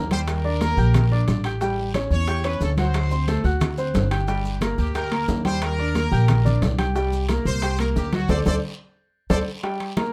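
A bright grand piano and a woody, thumpy pizzicato upright bass open this driving, danceable salsa excerpt at 180 BPM in 4/4, joined at once by a tight trumpet section with light vibrato carrying the melody over background congas with a damped, thick skin, round low-tuned bongos, raspy guiro and grainy maracas, plus ringing metal-shell timbales, the band heard through close, detailed microphones in light reverb, with a drum fill and band accent arriving at 8.3 seconds before the trumpets and bass stop at 9.4 seconds.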